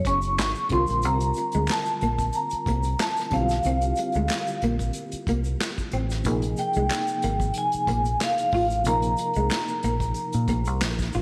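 R&B with a neo-soul lean, this soulful, introspective excerpt moves at 92 BPM with a light sixteenth-note swing, its vibraphone melody sitting up front with a metallic, ringing tone, fast motor vibrato and a slapback echo. Beneath it, a full-bodied FM electric piano with tremolo, a slightly broken-up picked electric guitar with ensemble chorus, and a round, dark fingered dub bass carry the harmony through sus4 ninth chords, shifting to Bb9sus4 at 6.2 seconds. An airy acoustic kit played with bundle sticks adds handclaps, hi-hat, punchy kick and snare, while a tube shaker and finger snaps sit in the background, all inside a moderate echo chamber reverb.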